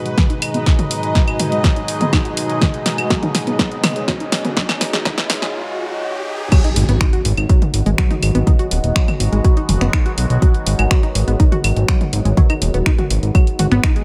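A punchy, up-front electronic kick and a layered house kit with a punchy snare, bright hats, claves, finger snaps, toms and crash cymbal drive this straight 123 BPM melodic techno piece in G# minor, driving and cinematic. Over them a tight, full-bodied sequenced synth arpeggio with chorus and delay and a resonant, evolving sweeping pad holding a G#m7 chord both pump against the kick, set in a high-pass-filtered digital ambience. During the build-up a vintage, warbling analog drone and a lush, bowed studio string section sit in the background until 5.5 s, a filter sweep and an electronic riser lead into a short break, and at 6.5 s the drop lands with an impact, followed at 6.8 s by a fat, saturated, wave-folded analog bass entering up front.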